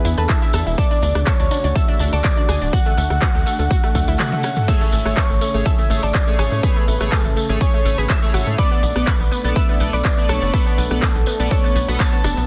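A straight 4/4 pulse at 123 BPM drives this hopeful, expansive progressive house passage in A major, with a punchy overdriven electronic kick and a tight, saturated sequencer bass up front, a big-room dance kit of crisp hats, handclaps, rim clicks, toms and crash, and a jingly, close tambourine. A mellow octave-layered lead with vibrato and dub echo carries the melody over a very quiet, dark pluck line, nasal detuned analog-pluck arpeggios and a lush unison pad in the background, with sidechain pumping breathing through the lead, pad, arpeggios and bass. A faint electronic swell arrives at 3.9 seconds and a drum fill follows at 4.0 seconds, and glossy, retro chorused polysynth stabs enter at 4.7 seconds as the chords move from E7 and Dmaj7 to Amaj7 and Bm7, all under light reverb in a dense, heavily limited mix.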